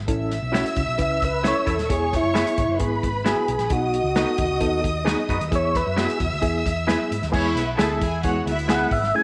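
An uptempo 1960s-style soul cut at 132 BPM in a straight 4/4 with a danceable, warm mood, led by a clear, lightly overdriven tonewheel organ that carries the melody from 1.0 s with key click, a slow rotary speaker and slapback echo, moving through A, E and B chords. Beneath it, a round, hollow-body picked bass, a reedy, slightly out-of-tune electric piano with fast tremolo, twangy, lo-fi guitar stabs through a small old amp, and a lush bowed violin section fill out the arrangement over a roomy soul drum kit with dark cymbals and a tight kick, plus barely audible congas. At 7.3 s a distant, jazz-style horn section joins as the music shifts into a new section, all set in moderate plate reverb and small room ambience.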